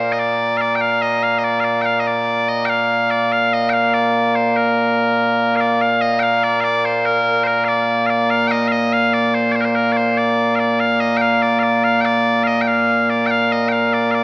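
A dark, warm production sets a lone bagpipe in a moderate stage reverb, its bright, piercing tone held up front in a continuous sound from start to finish. This stirring, proud excerpt of Scottish traditional pipe music moves in a straight 6/8 at 96 beats per minute in Bb major, with the solo pipes ranging from Bb2 up to G5. The same opening strain is heard twice, the repeat beginning at 5.8 seconds and running to 14.2 seconds.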